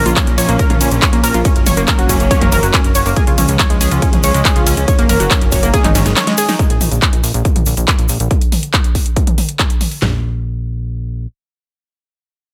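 This driving, soaring uplifting trance excerpt opens mid-drop at 140 BPM. A lush bowed string section holds sustained chords in the background, while a round, warbling analog pluck spins arpeggios colored by chorus, cassette-tape grit and delay, and a funky sawtooth-and-square analog bass with a filter sweep sits up front; all three pump with sidechain compression. Two layered big-room dance drum kits hit hard and close: one brings a punchy kick, huge snare, handclaps and toms, the other adds metallic hats, ride cymbal, claps, snare and toms, both re-recorded in a small room. A grainy, bright tube shaker sits close and dry behind them. The harmony moves from Bb minor through Gb and Db to an Absus4, and a drum fill leads into 6.6 seconds, where the strings and pluck stop and the chords fall away. The drums and bass carry on from there, with the bass lasting until 11.3 seconds, all set in a digital ambience.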